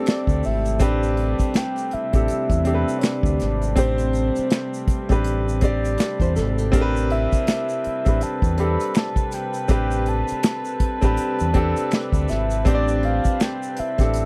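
An up-front acoustic drum kit with a tight kick, medium-tuned snare and hi-hat played with bundle sticks anchors this late-night, soulful neo-soul excerpt in A minor at 81 BPM, its 16ths swung and resting on a single Am11 chord. A round, dark fingered electric bass and a clear concert grand piano with long sustain sit close beside it, while a soft octave-layered synth lead, detuned with chorus and vibrato, carries the melody above reedy, gut-string chamber strings in the background and faint finger snaps, handclaps and tube shaker. A boxy, fingerpicked nylon-string guitar appears only briefly, from 6.2 to 7.7 seconds, all within a dry, close 1970s-style studio sound.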